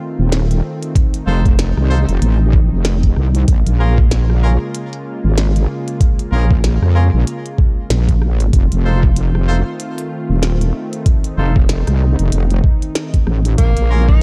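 A heavy, saturated wobble bass sits up front in this swaggering, playful glitch hop, its detuned sawtooth growl given a chorus sheen, while a gritty, pitched-down kick thumps alongside it and a glitchy electronic kit adds a tiny snare, rim clicks and clicky hats to the swung groove. A smooth, detuned analog pad holds sustained chords with chorus and sidechain pumping, and a brilliant, tight horn section punches out stabs through digital delay over the F7 and Bbm7 changes. At 13.6 s a clear, distant tenor saxophone slips in with light vibrato and scooped notes before this cut from a longer piece ends, all set in a dark, warm digital ambience.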